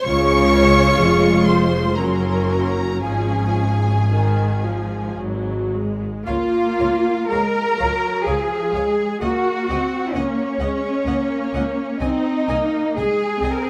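Classical string-orchestra music in a slow, lyrical and tender romantic movement in 3/4 and Db major, taken from a longer piece, moving with rubato at about 55-67 BPM, where a smooth, warm violin section sings the melody high above a lush, expressive second violin line, focused violas give accompaniment, up-front cellos with light vibrato carry the bass beside an intense, clear double bass section, and close, detailed microphones with light reverb capture the passage from its opening section into a second one at 6.3 seconds.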